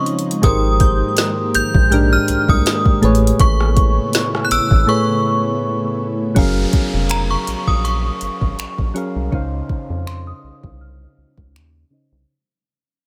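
A gently swung 16th-note groove from a soft, up-front electronic R&B kit of finger snaps, hi-hat, kick, rim click and woody snare carries this smooth, tender contemporary R&B excerpt, where a rubbery, hollow square bass and round electric-piano-like synth keys move through lush major-ninth chords beneath a ringing, inharmonic chime melody, an ethereal detuned pad holds chords until 6.3 s, a very quiet crystalline pluck glints briefly near the start, and from 6.4 s a filter sweep, fade-out and electronic downlifter draw the music away.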